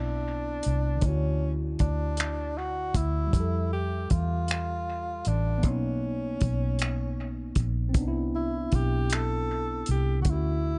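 Awash in echo and studio reverb, with the top end trimmed away, this sensual, warm slow R&B excerpt in a straight six-eight sways through lush major-ninth chords. A breathy tenor saxophone carries the jazz-style solo melody with vibrato, scooped notes and a smooth top, over a clean tine electric piano heard through its built-in speakers, both trailed by analog delay. Up front sit a dark, round, foam-muted fingered electric bass and, from 0.6 s, a dry, muffled, lo-fi soul drum kit of finger snaps, hi-hat and a tight kick.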